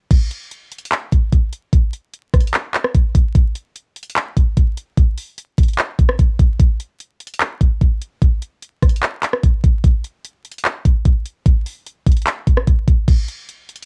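A dry, homespun cassette recording dusted with vinyl crackle carries this brief, wistful yet triumphant hip hop cut at 148 BPM in 4/4 with a half-time feel, built entirely on an up-front electronic trap drum kit from 0.1 to 13.9 seconds, its knocking kick, bright hi-hats, handclaps, rim clicks and crash cymbal all given a warm tape glow.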